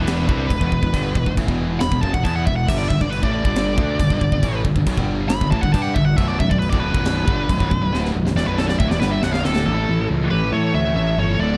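Heavy metal at 138 BPM, aggressive and epic, cut from a longer piece with a dark, warm production and little reverb. A bright, distorted lead guitar with tape echo solos over three picked, distorted riff guitars (one scooped, one very quiet and double-tracked) and an up-front, growly fuzz bass, while a tight acoustic kit with bright china and crash cymbals, a high-tuned snare and tight kick drives the section through the chords E5, G5 and Bm, ending in a drum fill from 7.9 seconds. At 9.7 seconds the drums and one riff guitar stop as the harmony moves to A, and a second lead line in the background joins the first lead, bass and remaining riff guitars.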